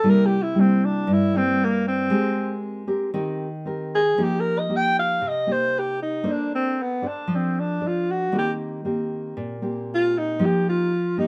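Bossa nova in Bb major at 116 BPM, sunny and relaxed, this short excerpt from a longer piece features a jazz-style alto saxophone soloing up front from 0.0 to 11.3 seconds, its roomy tone carrying a light vibrato. A warm, thumb-plucked classical nylon-string guitar accompanies throughout, moving through chords such as C7, Abmaj9, F9sus4, Bbmaj9 and Eb6. The pair sit in a light reverb.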